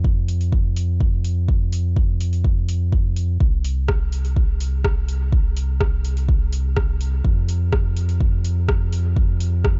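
A straight 4/4 groove carries this nocturnal, meditative dub techno fragment, cut from a longer piece, built on an up-front overdriven electronic kick drum with a deep, layered body re-recorded in a small room. From 0.3 s a quieter, overdriven deep house kit adds metallic hi-hats and rim clicks, while a round analog bass blending sawtooth and sine sits up front with a fast attack, tube saturation and sidechain pumping. The whole is wrapped in a dark digital ambience.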